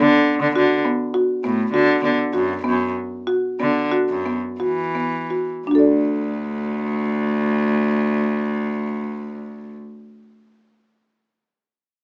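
A 9/8 pulse with a straight feel slows down from 0.6 through 5.7 seconds in this playful, hopeful chamber music excerpt, cut from a longer contemporary instrumental piece. A woody, close-miked marimba played with medium mallets plays arpeggios up front, while a single bowed cello with a nasal, gut-string, period-style tone carries the bass line until 9.7 seconds. The harmony moves from B minor to D major at 5.7 seconds, all set in a wet studio ambience with a small-speaker character.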